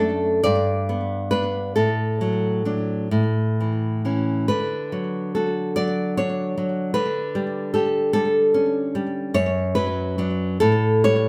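Tender and sunny, this romantic piece for solo classical guitar moves in a relaxed 6/8 at roughly 42-51 BPM, counted in dotted quarters, with a freely breathing rubato feel in D major. A single nylon-string guitar carries everything, fingerpicked in a classical manner and sitting up front with a bright, full-bodied acoustic tone that spans from F#2 up to D5. A touch of slapback echo trails the guitar's notes, while a moderate studio reverb lends the room a gentle sense of space. The harmony opens on G and drifts through D/A, A and D, then leans on A7/D around 7.0 seconds before settling toward D/F# and closing on A7 near 10.6 seconds. Lasting about 11.3 seconds, this fragment is lifted from a longer piece and ends poised on that unresolved dominant.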